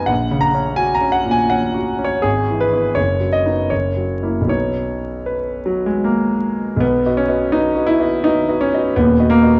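Classical romantic character piece for solo piano in B major, passionate and brooding, moving in a rubato 3/4 at roughly 75-86 BPM through chords such as F#/A#, E/G#, B/F#, F#7 and B before settling on B/D# at 9.0 seconds. A clear, natural concert grand sits up front alone for the full 9.6 seconds, its deep bass reaching down to D#1 and its short sustain letting each chord speak plainly up to B5. The piano is bathed in a wet recital hall reverb and overlaid with vinyl crackle, and this brief cut from a longer work shifts into a new section at 6.8 seconds.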